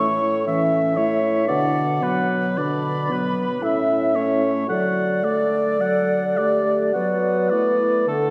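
Classical slow romantic movement for wind quintet in D major and 3/4, moving with rubato at 52-61 BPM in a melancholic, yearning mood, where an airy silver flute carries the melody with vibrato over a warm oboe second line, a soft-attacked clarinet and a distant French horn in accompaniment, and a roomy bassoon bass, all heard from further back on a wet scoring stage through chords of A, Bm, A and D, in a passage cut from a longer piece.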